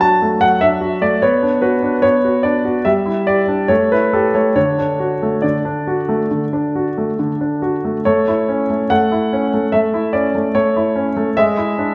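Playful and elegant, this short passage from a classical-period piano sonatina is carried by a solo concert grand, played with a loose, rubato feel over uneven beats. The piano sounds polished and up front, with a deep bass, reaching from D3 to A5 across a phrase that moves into a new section at 8.0 s and closes on an E7/G# chord at 11.4 s. A moderate reverb from a church or concert hall surrounds the instrument.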